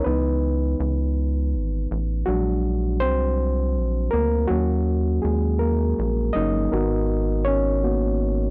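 Slow, yearning late-night R&B in G# minor at 54 BPM in 6/8, this short excerpt pairs a gritty, overdriven reed electric piano, up front through a combo amp, with a rubbery, hollow square-wave bass entering at 0.1 s, as chords move from C#m7 through A#7b13 and D#m7 to G#m7 at 6.7 s in a dry, close 1970s-style studio sound.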